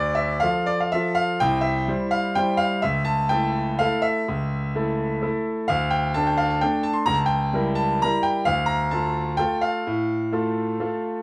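Elegant and bittersweet, this short excerpt of a classical piano waltz moves in 3/4 with a flexible, rubato feel, its tempo drifting between 118 and 137 BPM in D minor. A solo concert grand carries the whole passage from 0.0 to 11.2 seconds, ranging from C2 up to C6. The piano sounds bright and brilliant, with deep bass, an open character and long sustain, placed up front. Its harmony passes from D minor through C and A over C-sharp, touches a bare D fifth, and leans on a C-sharp diminished seventh before settling back on D minor at 8.5 seconds. A moderate stone-room reverb with a 1.0-second decay surrounds the instrument, and the overall production is dark and warm, lending the passage the feel of a fragment lifted from a longer piece.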